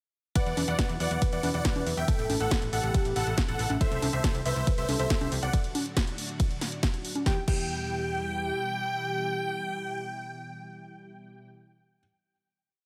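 A four-on-the-floor electronic kick and an overdriven analog drum machine of snare, hi-hat, ride, crash and congas drive this soaring, euphoric uplifting trance piece, while a plucky analog bass rolls in sixteenth notes with sidechain pumping beneath huge detuned supersaw chords that carry a repeating riff melody in thirds and sixths, joined by a velvety chorused synth lead on its own repeating riff, a very quiet, clear grand piano doubling the anthem line with audible action noise, and a silky string pad sustaining in the background, until the drop settles onto a final chord at 7.3 seconds and the drums stop at 7.6 seconds.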